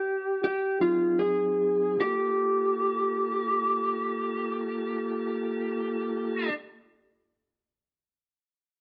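A moderate studio reverb gives this short blues fragment a modest sense of room, with both instruments placed up front and a plate reverb on each. The mood is brooding and soulful, in a 12/8 metre with a straight feel, and the time slows over the first two seconds. An electric slide guitar opens alone with a dark, slightly broken-up, compressed tone, playing a fingered melody in a narrow band of its upper-middle range. At 0.8 seconds a soft tonewheel organ enters on an Ab7 chord, its flute-like, clean voice shimmering through a slow rotary speaker with vibrato. From 2.0 seconds the harmony settles onto Gm9, and the organ's sustained chords sit alongside the slide line until both parts end together near 6.5 seconds.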